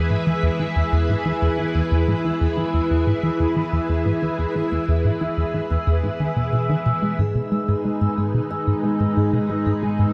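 Mysterious and hypnotic, this brief excerpt from a longer piece of ambient, sequencer-driven space music moves at 91 BPM in a straight 4/4. A plucky analog bass riff sits up front from the start, punchy and funky with a fast attack and a filter pluck, dressed in lush chorus and delay. Alongside it, a full string machine ensemble holds sustained chords with a slow attack, its vintage, bright tone thickened by ensemble chorus and shimmer reverb. From 0.3 seconds a vibraphone played with medium mallets adds metallic, ringing arpeggios in a higher register, carried by delay and shimmer reverb. The harmony rests on E before shifting to G#m at 7.2 seconds, and at 9.0 seconds a very quiet, warbling analog drone slips in on G#2 with detuned, evolving pulse-width movement. The whole mix is dreamy and soaked in a moderate plate reverb.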